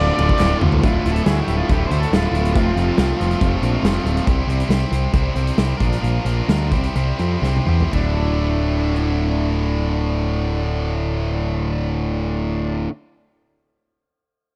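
Brooding and gritty, this classic rock excerpt in D minor moves at 118-140 BPM in a straight 4/4, with a growling, overdriven picked bass up front beneath a tight, bright distorted guitar riff and a huge arena drum kit with a punchy kick, while a biting lead guitar with wah and tape echo, a double-tracked cranked stack guitar, a brief crisp group handclap at 0.4 seconds and a compressed overdriven guitar with spring reverb all appear early. An overdriven slide guitar plays a second line from 0.8 seconds, pausing and returning at 7.9 seconds over a Dsus2 chord after the music slows from 4.3 seconds through a C, Bb and C passage. The sound is dry and close, like a 1970s studio recording.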